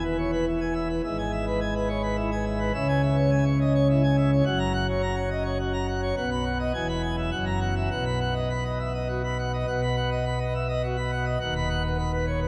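A full, brilliant pipe organ plenum with its mixtures drawn sits up front in a wet cathedral reverb that hangs for seconds, giving this jubilant, majestic classical organ toccata a vast sense of space. Played solo at 105 BPM in 3/4 and B major, the organ spans from a deep D-sharp1 to a bright B5 in a romantic voicing, moving through E, C-sharp minor and F-sharp before settling on B. This short cut from a longer piece repeats its opening section from 9.7 seconds and closes on B over D-sharp at 11.4 seconds.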